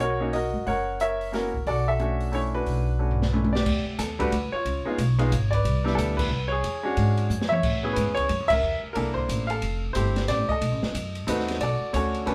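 A swinging 3/4 pulse at 181 BPM drives this smoky jazz piano trio excerpt in B minor, where a clear, intimate baby grand with audible action noise carries the melody up front over a woody, pizzicato upright bass on steel strings, while an open acoustic drum kit with a high-tuned snare, boomy kick and dark, rolled-off top adds a fill from 3.0 to 3.7 seconds and joins band accents at 6.1 and 8.5 seconds, all captured live in one room with moderate studio ambience as the harmony moves through rich extended chords like Em11, C#9 and B7b9.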